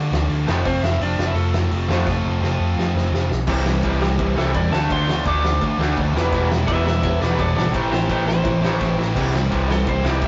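A rough, saturated rehearsal-room sound in a stone-walled space carries this angry, urgent punk rock excerpt at 169 BPM, where a growly, up-front overdriven bass drives a stack of picked guitar riffs (a bright double-tracked one, a lo-fi garage one and a cranked one in the background) over a distant, roomy drum kit with a fat snare and dark cymbals, fills at 2.1 and 8.8 seconds, and a dark, slightly broken-up lead guitar that launches a solo at 3.5 seconds as the chords move from C through Dm, Em and Am.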